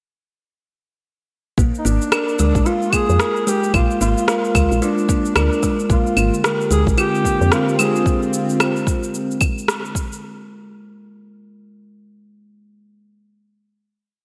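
Organic downtempo with an earthy mood, set at 111 BPM in Bb mixolydian with a 16th-note swing, built as a short whole piece on a single Bb7 groove that begins at 1.6 seconds. A soft, deep electronic kick and an up-front layered beat of cabasa, rim click and claves sit under a round, dark FM bass playing a syncopated riff with sidechain pumping, while a hollow, ringing kalimba repeats a 16-step arpeggio through tape echo and a mellow, distant duduk sings folk-style arch phrases with vibrato and scooped notes. At 6.3 seconds a detuned sawtooth analog pad enters with chorus, pumping and slowly shifting chords, and the whole mix is soaked in a lush hall reverb that gives it a dreamy glow until it closes at 10.2 seconds.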